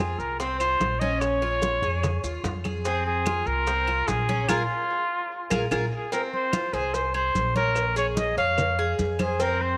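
A breathy, intimate trumpet with vibrato and a soft attack sings the melody up front from the start over metallic, double-strung tres arpeggios carrying tape echo, a dark, thumpy pizzicato upright bass and bright, damped congas, soon joined by grainy maracas, tight, high-tuned bongos and cowbell kept very quiet, and woody claves in the background, in this danceable, warm fragment of Cuban son and guajira at 147 BPM in 4/4, where the band hits an accent from 4.5 to 6.1 seconds around a drum fill at 5.9 seconds, set in a moderate plate reverb as the chords move through Bbm7 and Fm.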